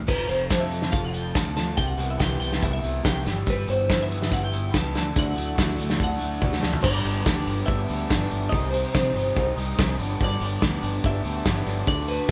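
An overdriven electric guitar, a twelve-string electric guitar and a growling fingered electric bass start together at 0.0 seconds, opening this upbeat, jangly indie rock excerpt: a straight 4/4 groove at 142 BPM in G major. The picked overdriven guitar riff is bright and carries a touch of spring reverb, while the clean, compressed twelve-string riff sits twangy in the background, and the bass adds its own overdriven grit. A second twelve-string electric guitar carries the melody up high, joined by a very quiet, flute-like tonewheel organ holding soft sustained chords through a slow rotary speaker with vibrato. Up front is a loose acoustic drum kit with a punchy kick, a medium-tuned snare and dark cymbals. The chords move through F, Cmaj7, G6 and Dadd9 before a drum fill at 6.4 seconds leads into a new section at 6.8 seconds that moves between G and Cm. The band plays live in one room, surrounded by a moderate large studio reverb.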